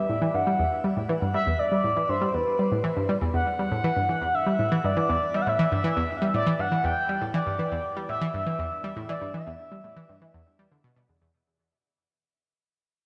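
Ambient music in E minor at 120 BPM in a straight 4/4, this excerpt from a longer piece feels mysterious and expansive, resting on a single Em7 chord throughout. An analog pluck carries the riff in the low register from E2 to G3, its round, bright tone built from sawtooth, square and triangle waves with a noise layer, ring modulation and a filter sweep, with a fast attack and short decay. Above it, an expressive synth lead sings the melody between B4 and G5, smooth and dark with a soft attack, sustained notes and vibrato. Both parts sit up front and share chorus, shimmer reverb and tape echo, placed in a wet echo chamber with a 2.5-second decay that makes the mix heavy with echoes. The lead stops at 10.8 seconds, and a fade-out from 6.0 seconds carries the pluck to its end at 11.3 seconds.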